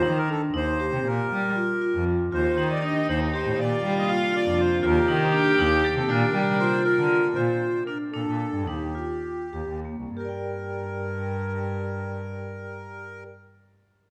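An accordion carries the melody from the outset, its reedy, close-miked tone full and dry, while a vibraphone struck with hard mallets rings out bright, metallic arpeggios and a rich, nasal cello with a gut-string, period-style sound anchors the bass. This is contemporary chamber music in an urgent, restless 5/8, counted in quick eighths between 182 and 241 BPM with a straight feel, centered on G minor. At 2.3 seconds a clear, intense viola adds a second line with a smooth top, and a soft, organ-like pad of pure sine tones with a slow attack and ensemble chorus sustains chords in the background. Soon after, crotales add a faint shimmer of high, bell-like notes with a mellow, vintage, band-limited color. From 7.4 seconds the music slows, arriving on an Ebadd9 harmony before settling on G minor. The ensemble sits in a moderate recital hall reverb, and the passage is an excerpt from a longer piece.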